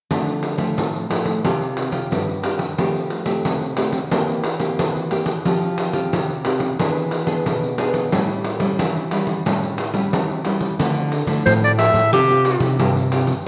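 A jingly pandeiro sets a straight 4/4 pulse at 90 BPM for this samba and choro piece in D minor, carrying a nostalgic, bittersweet mood. Underneath, a fingerpicked nylon-string guitar plays classical-style accompaniment throughout, moving through chords such as Dmadd9, Csus4, Fadd9, C7/E and E7 before settling on A7. At 10.8 seconds a new section begins, returning to Dmadd9, and a second nylon-string guitar enters on the bass line with a tube-saturated tone. A clear clarinet steps up front at 11.5 seconds for a brief classical solo phrase, the loudest voice in the mix. A moderate spring reverb adds a sense of space to the whole, and the passage is cut from a longer piece.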